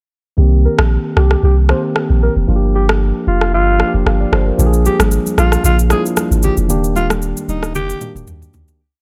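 A growling, breathy alto saxophone carries a syncopated, jazz-tinged hook over a mellow tine electric piano, a punchy, deep sub bass with sliding, bouncy lines, an afro-pop drum kit of soft kick, rim clicks, shaker and toms, and very quiet congas entering at 4.6 seconds, in a romantic, sunny afrobeats breakdown at 114 BPM in Eb major that moves through Cm7, Gm7, Bb7 and Ebmaj7 under a filter sweep and digital ambience, with a fade-out beginning at 6.7 seconds and a drum fill following at 7.7 seconds, both closing at 8.8 seconds.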